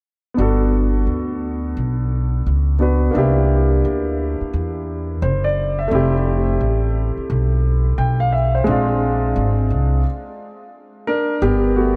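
Soaked in a huge, dreamy reverb, this cool jazz-hop excerpt in G major, tuned to A4 = 445 Hz, sways at 87 BPM with a swung sixteenth feel, as an intimate, vintage grand piano with audible action noise plays accompaniment from 0.3 seconds through Gmaj7, C7, Fmaj7 and Bb7 chords, while an up-front, woody pizzicato upright bass enters at 0.4 seconds, before a stop at 10.0 seconds.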